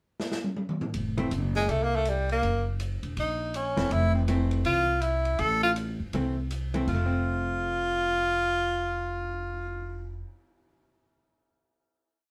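A compact, live-in-one-room sound with short, wet studio reverb frames this brief, relaxed small-group swing and bop piece in F major at 162 BPM, opening with a drum fill on a dark, smooth kit with boomy kick and a stick-played ride pattern before the woody, thumpy pizzicato upright bass settles into a two-feel at 0.9 seconds. A bright tenor saxophone sits up front with scooped notes, stating a bebop-style theme that returns, while a clean, compressed hollow-body guitar adds a brief touch at 1.2 seconds and then comps in syncopated three- and four-note chord shapes from 3.8 seconds. The band moves through Gb7 and Fmaj7 before landing on a final F chord.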